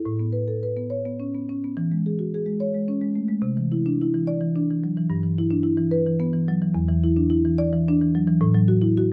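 A woody, up-front solo marimba played with medium mallets rings through moderate studio reverb in this hypnotic, flowing contemporary classical excerpt, moving at 72 BPM in a straight 6/8 across a range from E2 to D5 and drifting through Aadd9, E6, Cadd9 and G6 harmonies before a brief chordless passage at 6.8 seconds settles onto A5 at 8.4 seconds.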